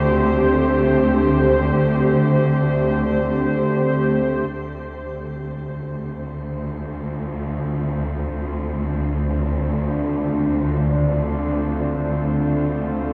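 This ambient excerpt moves in free time, drifting in D minor with a melancholic, reflective mood. A warbling, tape-like pad sits up front, holding sustained chords from D3 to C5 with a nostalgic, lo-fi character, its detuned tone softened by chorus and shimmer reverb. Beneath it, a dark symphonic cello section holds a bowed D2 bass, woody and lush with vibrato yet set at a distance. An analog drone spanning D3 to D4 adds an evolving, mellow bed of pulse-width modulation and chorus. The harmony shifts from D7(no3) to Dm7 at 4.5 seconds, where a fade-in on the ambient pad begins and carries through to 13.1 seconds, all bathed in a huge, wet reverb with an 8.6-second tail.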